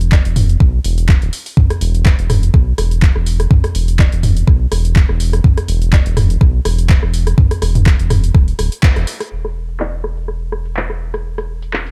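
The overdriven electronic kick drum stands out most, a thumpy, sampler-style hit placed up front with the feel of a small room, driving from 0.1 seconds until it drops out at 8.9 seconds. This is a trippy, raw acid house cut at 124 BPM in 4/4, with a 55% swing on the sixteenths and tuning at A4 = 442 Hz. Beneath it, a round, deep analog bass built from sawtooth and sine tones with ring modulation sits low between D1 and B1, evolving as it plays, with a fast attack, sustained notes and sidechain pumping that makes it breathe against the beat. A punchy, overdriven analog drum machine fills in handclaps, hi-hat, rim click and toms, its hats, snare and toms shaded by a low-pass filter. The opening stretch plays as a drop, a band accent lands at 8.8 seconds, and from 9.3 seconds a filter sweep on the drums carries the closing section. The production is dark and warm, with little reverb.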